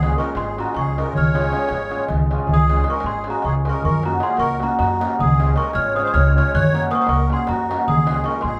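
A woody, thumpy upright bass sits up front, plucked on dark gut strings, anchoring this exuberant, virtuosic Balkan wedding-band tune in 7/8 at 312 BPM (eighths) in Db major, moving between Db and Gb chords. Above it, a worn, slightly out-of-tune celesta with hard felt hammers carries a sweet, bell-like melody, while a reedy, shimmering musette accordion plays a second line and an acoustic, ringing cimbalom fills out the hammered accompaniment. A crisp, small metal-shell darbuka sounds distant, as if in a large room, and the band plays live together in one space with a wet studio reverb, in a passage cut from a longer piece.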